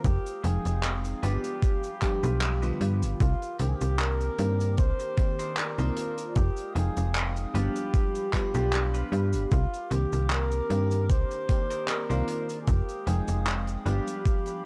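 Vaporwave in C minor at 76 BPM with a light 16th-note swing, woozy and melancholic, this short cut from a longer piece sets a distant, roomy flugelhorn with light vibrato and tape echo over a lush FM electric piano with a soft pad layer, washed in phaser, chorus and dub echo, as the chords cycle through Fm7, G7 and Cm9. Underneath, a snappy, metallic slap-like FM bass and an overdriven, thumpy electronic kick sit up front, joined by a dark, rolled-off studio kit with cabasa, handclaps and hi-hat, while a warbling square-and-triangle tape-like pad with built-in reverb hums in the background. A clean semi-hollow electric guitar riff with subtle chorus and dub echo stays low in the echo-heavy cassette mix, and a clean electric guitar fill arrives from 1.6 to 3.2 seconds.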